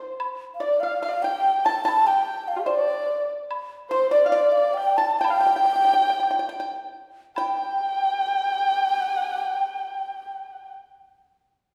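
Chinese traditional chamber music, graceful and festive, in a free rubato 2/4 around 50-74 BPM in the G shang mode, taken from a longer piece. A breathy, mellow low xiao carries the tongued melody with vibrato, while a dark, woody erhu sits up front with portamento and a smooth top, and a fingerpicked pipa adds dry, percussive notes. A close woodblock taps from 0.2 until 7.9 seconds, and the ensemble slows down from 3.5 to 7.4 seconds, all heard from further back in a reverberant recital hall.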